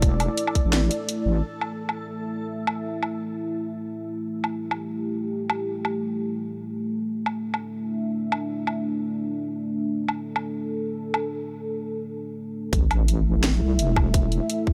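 A dark, moody mix with light reverb and a small-room ambience on the drums opens this tense, cinematic half-time drum and bass piece at 170 BPM, cut from a longer track. A deep, detuned sawtooth pad holds sustained chords throughout, its full-bodied, chorused tone pumping with sidechain compression. At the start, a deep, square-and-sine wobble bass and a tight, layered electronic kick sit up front, while a reversed, granular swelling texture adds a dreamy, bright shimmer. After 1.4 seconds the bass and texture fall away, leaving the pad and a produced kit of hi-hat, cracking snare and woodblock to carry a swung 16th-note half-time groove, with a break arriving at 11.3 seconds. At 12.7 seconds the kick and wobbling bass drop back in on an impact, marked by a very quiet electronic sub drop.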